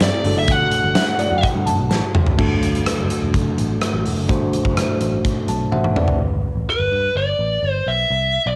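An up-front, overdriven lead guitar with a biting edge carries the melody in this uplifting, nostalgic 1980s-style pop excerpt at 126 BPM. It returns at 6.7 seconds over a bright, bell-like tine electric piano and a round, foam-muted picked bass. Earlier, a big, punchy rock drum kit with a fat snare drives the groove, while a very quiet string machine voicing cellos adds sawtooth body with ensemble chorus and a distant tambourine jingles faintly at the start. A soft FM synth bell with chorus and analog delay enters at 1.0 seconds, drum fills mark the section changes, and the electric piano plays a fill before the drums and strings stop at 6.2 seconds, all in a moderate studio reverb on a home cassette recording.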